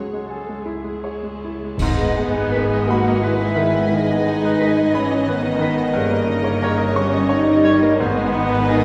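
A clear, open baby grand piano carries the melody in this passionate, brooding romantic orchestral passage in 12/8 with rubato, joined by a very quiet violin section also playing the melody, a lush second violin line, dark bowed violas and cellos, a tight French horn section holding sustained chords and intense double basses, with airy flutes, cymbals and bass drum on a band accent, and very quiet timpani entering at 1.8 s, and a mellow clarinet and bassoon at 2.5 s, the ensemble heard from further back in a reverberant scoring stage.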